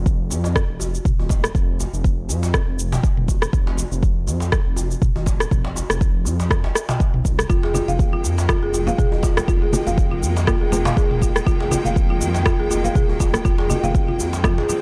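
A dry, gritty recording with little reverb carries this driving afro house excerpt in F minor at 121 BPM with a swung 16th feel, where a deep, up-front electronic kick, an electronic afro-pop kit of rim click, shaker and toms, a distant, metal-rattling djembe and a rumbling, detuned sawtooth bass with sidechain pumping hold a single Fm11 chord throughout. At 7.5 seconds woody marimba arpeggios with analog delay and clear, vibrato-rich bowed strings join, followed at 7.7 seconds by bright, soft-handed congas in the background.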